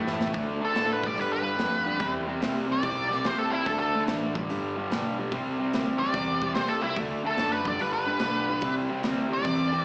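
A swung 145 BPM groove in 4/4 drives this gritty, heavy blues rock power trio excerpt with a southern rock edge, opening on a short drum fill from the big rock kit, whose punchy kick and medium-tuned snare sit in a studio room. A bright, double-tracked fuzz guitar riff with slapback echo rides up front over a growly, overdriven picked bass, while from 0.6 s a warm octave-fuzz lead guitar colored with wah sings a melody over a D5, G and C progression. The whole cut is heard as a live gig through the venue's PA, with club reverb, vinyl crackle and a small-speaker sound.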